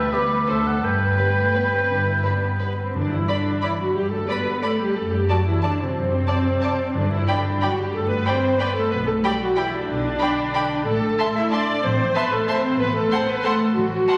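Classical orchestral music in 3/4 with a rubato feel, elegant and sweeping, heard in a short passage cut from a longer piece. The melody sits in a rich, expressive violin section with vibrato, while a second violin section adds a lush, even line above a focused, up-front viola section that fills in the accompaniment. Cellos, bowed with vibrato and portamento, join a smooth double bass section to carry the bass. At the opening an up-front solo oboe with light vibrato sings a second line, and a dark, very quiet horn section holds sustained chords beneath it; both fall away by 2.8 seconds. Timpani struck with hard mallets sound in the background at 3.0 and 6.9 seconds, as the harmony moves through a gently shifting progression before arriving at a diminished chord near the end. A concert hall reverb surrounds the orchestra, and a vinyl crackle runs underneath.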